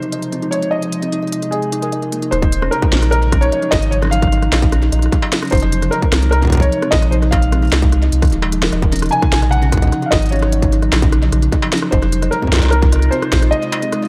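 A cerebral, melancholic IDM piece in Eb dorian at 150 BPM opens with a soft, felt-muted upright piano carrying the melody through a tape echo, over a glassy, warbling FM pad whose sustained chords shimmer with ensemble chorus and their own reverb. Woody kalimba arpeggios with a hollow, thumbnail-plucked tone trail off into dub echo, while an industrial drum kit adds crisp hats, rim clicks, struck metal and a clanging snare, also sent through tape echo. At 2.3 seconds a round, deep sine sub bass arrives up front in the mix, joined almost at once by a distorted electronic kick. The harmony moves between Fm7 and Ebm9, and the whole mix sits in an echo-heavy digital ambience with light reverb. The bass and kick drop out for a brief break at 13.5 seconds, leaving the piano, pad, kalimba and kit as this fragment of a longer piece cuts off.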